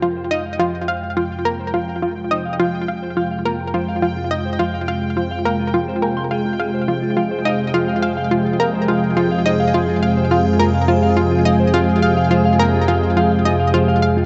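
A dim, plate-drenched production with its top end rolled off frames this hypnotic, expansive stretch of sequencer-driven space music, cut from a longer piece and resting on a single chord. A bright, up-front analog pluck riff with chorus and delay rides over an airy, evolving sawtooth pad of sustained chords and a fat, tube-saturated analog bass, while a bubbling, resonant stepped-filter texture sits low in the mix. A clean, hollow-body electric guitar enters at 0.2 seconds with fingered arpeggios through delay, and the guitar, pad and bass each fade in across the whole passage.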